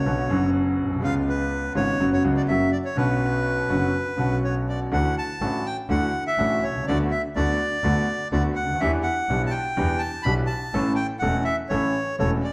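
Rubato 4/4 at 124 BPM gives this sultry, tense tango excerpt an elastic pulse as a reedy, bright, close-miked bandoneon carries the melody over deep-bassed concert grand piano accompaniment and a smooth, boxy bowed double bass with light vibrato, the band playing live in a stone room with a reverberant tail while the harmony shifts from B minor to D major at 4.9 seconds.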